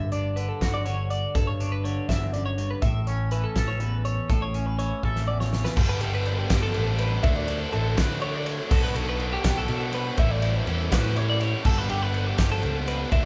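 Intricate and playful, this math rock and midwest emo excerpt moves in a straight 6/8 at 82 BPM, with a bright twelve-string electric guitar weaving compressed arpeggios through a harmonic tremolo while a twangy, scooped clean guitar accompanies until 5.7 seconds. A punchy, up-front picked bass and a loose indie drum kit with a fat snare, boomy kick and dark cymbals drive things along, and a drum fill at 5.0 seconds ushers in a biting, double-tracked overdriven guitar riff from 5.8 seconds as the chords move through G, D6, Bm7 and A7sus4. The band sounds like it is playing live in one large studio room, with a moderate reverb and a pumping room sound on the kit.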